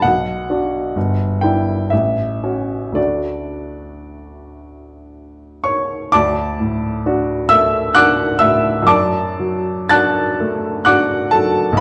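A 3/4 pulse, stretched and relaxed with rubato at roughly 53-67 BPM, carries this dreamy, tender romantic nocturne for solo piano in D major, cut from a longer piece. The baby grand sits up front with a warm, open tone, ranging from G1 to A6 as its harmony drifts from Bm through Em7/G and A6 to settle on D by 3.0 seconds, later touching D/F# at 8.9 seconds. A wet recital hall reverb and a dark, warm production wrap the instrument in a glowing space.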